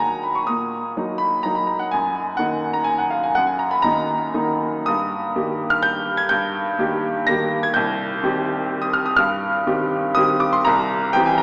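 A rubato waltz in 3/4, drifting between 106 and 135 BPM, this brief classical excerpt in E-flat minor carries an elegant, graceful mood. A solo upright piano, clear and woody with a slightly detuned edge and long sustain, sits up front and spans from C2 to Bb6, moving through harmonies that turn toward C minor and close on C7 near 10.7 seconds. A wet cathedral reverb surrounds the playing, though the overall sound has a small-speaker quality.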